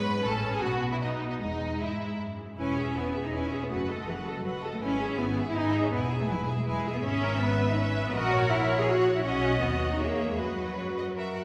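Up-front, rich cellos anchor the bass of this cheerful, graceful classical-period movement for string orchestra in E major, taken at a quick 161 BPM in 3/4, while smooth, bowed violins carry the melody above a second violin line of soft-attack, expressive vibrato, distant, lush violas fill the accompaniment, and woody double basses join at 0.3 s, heard within the wet bloom of a concert hall reverb.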